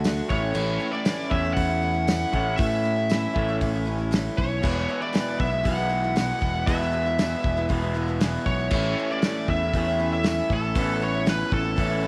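Folk rock and heartland rock at 118 BPM in A major with a nostalgic, open-road mood, this excerpt pairs a nasal, overdriven lead guitar with a parked wah carrying the melody up front from 0.3 seconds with a slightly broken-up, lo-fi electric guitar riff through a small old amp, a bright, boxy acoustic archtop guitar picking accompaniment in the background, a punchy picked electric bass, a damped 70s drum kit with dark cymbals and a tight kick, and a very quiet, jingly tambourine, all moving from A to E and back to A before an Aadd9, set in a moderate echo chamber reverb.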